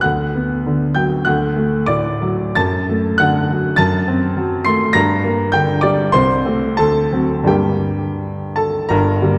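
In a rubato 2/4 that drifts between 81 and 104 BPM, this brief passage from a longer romantic character piece for solo concert grand piano has a bittersweet, brooding mood, settling into G minor from 3.8 s as the harmony moves from D major colours through a diminished chord to Gm, Am/C and D7. The piano sounds clear, smooth and vintage, with deep bass across its span from G1 to C7, short sustain and an up-front presence. It is set in a wet concert hall reverb within a dark production.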